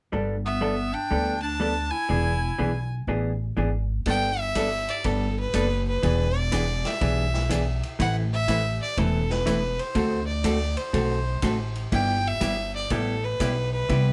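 This playful, down-home excerpt of country western swing opens with a dark, clean hollow-body electric guitar comping up front alongside a woody, growly upright bass played pizzicato with a thumpy low end. Moments later a clear fiddle takes the melody, bowed smoothly and evenly by a single close player with light vibrato. A bright, punchy clarinet adds a forceful, jazz-style second line with vintage vibrato beneath it, dropping out at 2.9 seconds. At 4.1 seconds a distant, roomy big-band drum kit enters with hi-hat, ride, a medium-tuned snare and a boomy kick, swinging the rest of the passage. The harmony moves through added-ninth, dominant-seventh and sixth chords, all set in a moderate club ambience.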